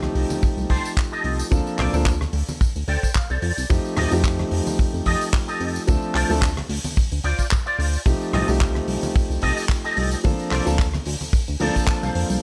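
Groovy and feel-good, this nu-disco excerpt moves at 110 BPM in 4/4 with a light swing on the sixteenths, sitting in F mixolydian over chords such as F9/C, Bbmaj9 and Dm7. An up-front concert grand piano carries the accompaniment with an intimate, boxy tone, audible action noise and long sustain, treated with sidechain pumping and analog delay. A bright, twangy electric guitar plays the picked riff through an envelope filter and ensemble chorus, while a clean electric guitar adds fills at 2.6 and 11.3 seconds. Underneath, a dark, glossy synth bass with a filter pluck and fast attack holds the low end, joined by a tight, dry kick that enters at 0.4 seconds with studio reverb. A damped 70s kit with a rolled-off top supplies handclaps, hi-hat and rim clicks, and hard-handed congas and tambourine sit in the background of a small room ambience.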